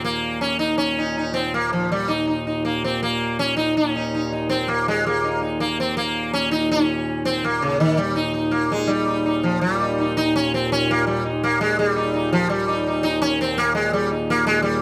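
From the first moment, a plucked sitar and a hand-pumped harmonium sound together in this devotional, radiant fragment of Hindustani classical music, cut from a longer piece. The sitar carries the melody up front, its buzzing tone and shimmering sympathetic strings giving each plectrum stroke a warm halo. Beneath it, the harmonium holds a low drone, reedy and nasal with a breathing quality, sitting mid-forward in the mix. The pace gathers speed steadily from start to finish, and a new section begins at 9.6 seconds. Close, detailed miking and light reverb keep the sound intimate, with the sitar's acoustic detail clearly in focus.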